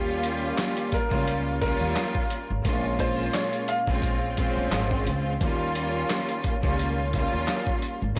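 A swung sixteenth-note groove in 4/4 drives this short boom-bap hip-hop cut, with a gritty, reflective mood. The sampler-style drum kit comes in at 0.2 seconds with a thumpy kick, a medium-tuned snare, hi-hat and handclaps, all compressed and pitched down, while a grainy tube shaker sits far back in the mix. Underneath, a woody pizzicato upright bass on steel strings adds dark tube saturation, and a bowed string section plays soft-attack, sul tasto chords with vibrato that feel intimate and up front through a cassette-tape coloring and filtering. A clear, slightly detuned upright piano carries the melody with long sustain and a touch of delay before dropping out at 4.9 seconds. The harmony moves from Eb7 to Bbm7 and back to Eb7, and the whole piece is wrapped in small-room ambience, vinyl crackle and a blown-out, overdriven finish.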